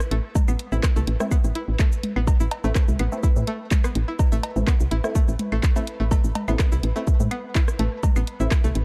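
A punchy, up-front electronic kick and a round, woody FM bass anchor this clinical, sparse minimal techno excerpt, where a twangy, string-like resonator pluck with delay, muted dub chord stabs, a bubbling stepped-filter texture in the background, an analog drum machine's claves, cowbell, rim clicks and toms, and a house kit's cabasa, handclaps and hi-hat sit in a dark, dry production.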